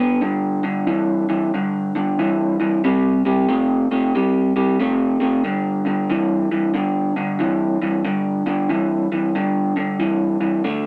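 An electric guitar played through a small old amp opens this gritty, soulful blues fragment and carries it alone for its full 10.9 seconds, moving through G5, C5 and back to G5 power chords at an easy swung pace. The picked tone is slightly broken-up and lo-fi, sitting up front in a moderate studio reverb that gives the lone guitar a touch of room.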